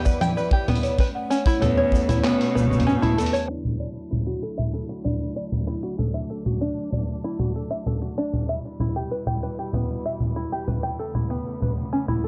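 Folktronica in D major at 96 BPM, hopeful and pastoral, this excerpt opens with an up-front, twangy fingerpicked open-back banjo playing arpeggios over sustained chords from a clear, smooth-topped string quartet, while a bell-like celesta adds a delicate second line through plate reverb and tape echo until 3.5 s. A punchy, airy kick drum sits under a muffled, tape-warm sampler-style kit of congas, handclaps, hi-hat and shaker, and a distant, bright bowed cello carries the bass with vibrato between 1.6 and 3.3 s. From 3.5 s a filter sweep moves across the string quartet as the harmony settles onto Dadd9 before returning to Em and Aadd9/E, all within a dark production and a small, moderate room.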